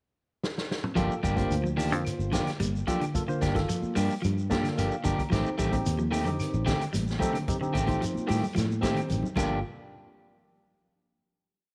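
A straight, driving afrobeat groove in 4/4 begins with a drum fill on a vintage kit at 0.4 seconds, its punchy kick and natural, medium-tuned snare setting up a hypnotic vamp. From 1.0 seconds the band moves between Gm7 and Am7b5 over a round, foam-muted fingered bass riff. A slightly broken-up electric guitar strums upper chord shapes up front, while a dark, clean guitar picks a spring-reverbed ostinato in the background, and a barky tine electric piano with phaser plays rootless syncopated stabs and a brief fill. Grainy shekere, very quiet high-tuned congas and a woody five-stroke clave time line fill out the percussion before the piece closes on a final hit at 9.6 seconds.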